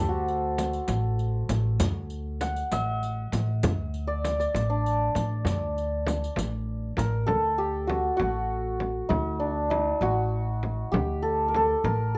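A 6/8 pulse carries this stately fragment of a Persian modal ensemble piece, with a hammered, shimmering santur up front playing the melody over a woody, thumpy pizzicato upright bass. A deep frame drum, a tight tombak sitting in the background and a riq with dark jingles fill out the percussion until the riq and tombak drop away at 7.1 seconds, leaving the large, dry frame drum under santur and bass for the closing section. Close, detailed microphones and light reverb keep the ringing santur and the hard-handed drums vivid and present.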